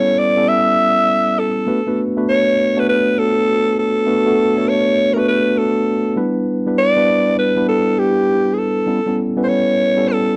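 Slick and bouncy, this short R&B excerpt moves at 100 BPM in 4/4 with a 16th-note swing that gives it an easy strut. A breathy alto saxophone carries the melody throughout, its pop-style solo sitting up front with vibrato, a raspy, gritty edge and a smooth top, plus a slapback echo. Beneath it, a clean tine electric piano plays accompaniment for the full 10.4 seconds, its warm tone heard as if through built-in speakers and placed up front in the mix. The harmony moves from A9 to Bm7 at 1.7 seconds, settles on Em7 at 6.2 seconds, and returns to A9 near the end. The sound is dry and intimate, like a close 1970s studio recording, touched only by light reverb.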